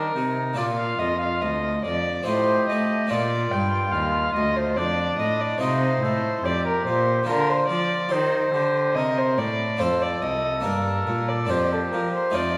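The dark, nasal violin stands out up front with its period gut-string second line, above a serene, dance-like baroque-style sonata movement in 3/4 at 72 BPM that settles into Bb major from 5.6 s. A roomy oboe with light vibrato carries the melody, while a brilliant, plucked Italian-style harpsichord fills in the accompaniment. A rich, close cello anchors the bass, all set in a wet scoring-stage reverb in this brief portion cut from a longer piece.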